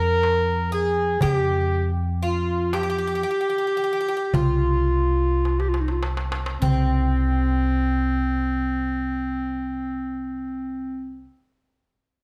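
A soulful, melancholic clarinet leads this makam ensemble piece, cut from a longer performance. It plays clear and present in a classical style, up front as a solo voice between C4 and Bb4, in F makam nihavent with tuning set to A4 = 437 Hz. A bright, picked bouzouki carries a second line in the same range, its doubled metallic strings, some octave-doubled, sitting lower in the balance. An up-front pizzicato upright bass holds down the low end with a woody, growly tone from steel strings. The metal-shell darbuka adds crisp, live-room percussion in a straight 10/8 at 101-123 BPM counted in eighths. The tempo slows through the opening section, and a drum fill leads into a new section at 6.6 s; the darbuka drops out at 7.2 s, leaving clarinet, bouzouki and bass in a moderate recital hall reverb.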